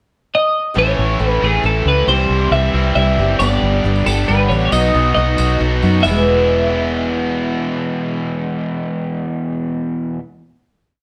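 Nostalgic and jangly, this short folk rock and heartland rock piece in E major moves at 136 BPM in 3/4, as a bright, twangy twelve-string electric guitar carries hook phrases with analog chorus and plate reverb over a picked steel-string acoustic guitar strumming open chords, a cranked stack guitar ringing overdriven, double-tracked chords, a punchy, foam-muted fingered bass driving eighth notes, and a jingly tambourine in the background from 3.4 to 6.2 seconds, through a pre-chorus of A, C, G and B that resolves on a final E chord at 6.0 seconds, all colored by the worn, warbly pitch drift of old cassette tape.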